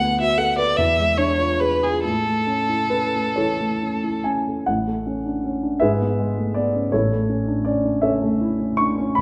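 A wet recital-hall reverb, with a decay of about 1.5 seconds, surrounds this short, melancholic fragment cut from a longer romantic classical duo for violin and grand piano. The piece moves in a slow, rubato 6/8, and its elegiac mood comes from a brief harmonic turn from Bm7/D through E7b9 to a settled A chord. Up front, a single bowed violin carries the melody with a focused tone, vibrato and a smooth top, singing over the opening 4.2 seconds. Beside it, a dark, mellow concert grand piano provides the accompaniment, with deep bass and a vintage character whose notes sustain only briefly. Once the violin stops, the piano continues alone through a second passage, moving through E/G# back to A before the fragment breaks off at 9.2 seconds.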